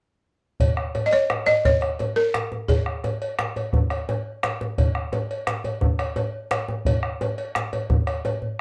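A woody, buzzing balafon struck with rubber mallets sits up front and dry from 1.1 to 3.2 seconds in this festive, driving excerpt of West African traditional drum ensemble music at 115 BPM in 12/8, carried by a round bombo, a tight, cracking, saturated djembe played with hard hands, and a metallic, distant cowbell in a large room, with a drum fill at 8.4 seconds and a dark production under moderate studio reverb.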